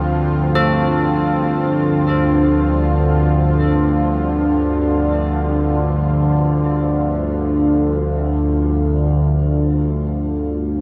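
A huge, moderately applied reverb with a long 8.2-second tail surrounds this short, unsettling and desolate dark ambient drone, cut from a longer piece and moving in free time with tuning at A4 = 442 Hz. Up front, an evolving analog drone of sawtooth and pulse waves with pulse-width modulation, chorus and phaser holds low between D2 and D3, fading out across the clip. Behind it, a sweeping resonant pad sustains chords from D2 to F4, its detuned sawtooth tone carrying a noise layer and a filter swell, treated with chorus and a shimmer reverb. The harmony rests on a Csus4/D chord. From 0.6 to 6.7 seconds, quiet carillon bells ring out arpeggios on A4, their bronze tone marked by a minor-third overtone and a worn iron clapper, scattered through a diffuse ambient delay and shimmer reverb.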